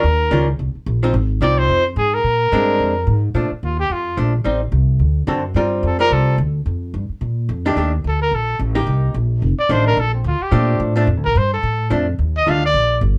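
The recording has the sound of a band playing live together in one studio room, with moderate ambience and all three players up front. It is a relaxed, swinging slice of small-group jazz in the swing and bop tradition, moving briskly at 217 BPM in 4/4 with a lilting swing feel on the eighth notes. The clear trumpet carries the melody with vibrato, scooped notes and a smooth top, stepping into a solo at 3.3 s as the harmony settles into Bb major over a Bbmaj7 chord. Underneath, the miked and amplified hollow-body archtop guitar supplies clean, picked, compressed accompaniment through chords such as Am7b5, D7, Gm11 and Ebmaj7#11. The acoustic upright bass, plucked on steel strings, gives a woody low end. The passage is cut from a longer piece and closes on an Ebmaj9 chord at 12.2 s.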